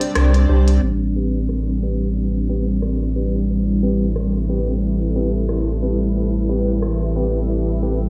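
A round, deep sine sub bass with tube saturation sits up front from 0.2 s, anchoring this hazy ambient dub fragment at 90 BPM in A minor with a swung 16th-note feel. A cloudy, detuned granular pad drifts through sustained chords, moving from Gsus4 to Am9 at 0.8 s, while a mellow tine electric piano adds clean stabs through dub echo. Low-pass filtered electronic drums supply crisp hi-hats and rim clicks re-recorded in a large room, with a filter sweep from 0.8 s until they stop at 7.0 s, all set in a moderate concert-hall reverb.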